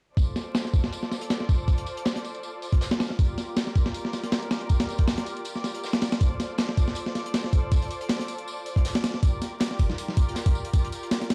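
Dark and nostalgic, this short cut from a longer drum and bass track leans toward the jungle side, with a gently swung groove. Muted strings played con sordino hold sustained chords from Dm7 to Gm7 and back, their veiled, soft-attacked tone carrying vibrato and a vintage 12-bit sampler grit, sitting well back in the mix. Up front, a compressed, sampler-style breakbeat kit drives the track with a thumpy, low-pass-filtered kick, a medium-tuned snare and dulled hi-hats in a small room. Beneath it, a second, quieter breakbeat kit adds saturated, crunchy hi-hat, snare and tambourine, thinned by high-pass filtering and rolled off at the top. Light reverb, small room ambience and vinyl crackle give the whole production a dusky, warm patina.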